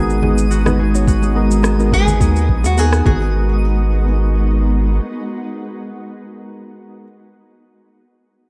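A short sunset chillout excerpt in G# minor at 106 BPM opens on a G#m7 chord, with soft, warbling electric-piano-like synth keys under chorus and delay, a round, deep analog bass up front, a ringing concert harp playing arpeggios in the background, and a faint twinkling granular texture sparkling above. A shimmering, ethereal pad with slow attack swells in underneath, while an electronic shaker and rim click, very quiet close congas and bongos, and a soft electronic kick from 1.1 seconds lay down a lightly swung, smooth groove. At 1.9 seconds a fingerpicked nylon-string guitar takes the wistful melody, its finger squeaks audible, carrying on with the keys to the end at 7.1 seconds in a dark, lightly ambient mix.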